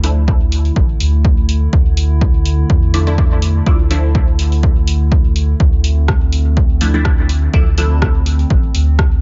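Dub techno at 124 BPM in D minor, this short excerpt cut from a longer piece has a nocturnal, deep mood, with a light swing on the sixteenths and a single Dmadd9 chord hanging over the whole passage. A warbling, lo-fi pad sustains dark, detuned chords through chorus and its own reverb, breathing with sidechain pumping. A filtered dub chord stab with a resonant, wave-folded filter pluck sits alongside it, treated with phaser and dub echo, and it stops at 8.0 s. Underneath, a soft, round sub bass holds the low end with the same pumping, while a punchy analog drum machine ticks out hi-hat and rim click and an up-front, tape-warm electronic kick joins at 0.3 s, both drum parts carrying the character of a small room. The mix is echo-heavy yet dry in reverb terms, with the top end rolled off above 7.5 kHz.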